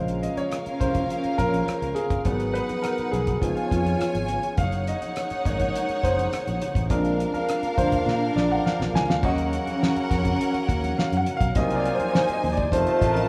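A clear concert grand piano leads this lush 1970s-style soul excerpt, taking a solo across the full 13.3 seconds over a smooth, cinematic groove at 103 BPM in Bb minor. Bowed studio strings sit up front with a warm, vibrato-rich second line, while a dark French horn section holds sustained chords in the distant background. A fingered electric bass gives a round, punchy low end, and a cloth-damped, thuddy drum kit with a fat snare, tight kick and dark cymbals keeps a straight 4/4 pulse, joined by very quiet, ringing congas. The drums play a fill from 8.1 to 9.2 seconds, and at 9.2 seconds a tight, vintage pop-style horn section enters with punchy stabs. The harmony moves from Bbm7 through Gb6 and Ebm9 before landing on F7, all captured dry in a rough home demo mix with a small room feel.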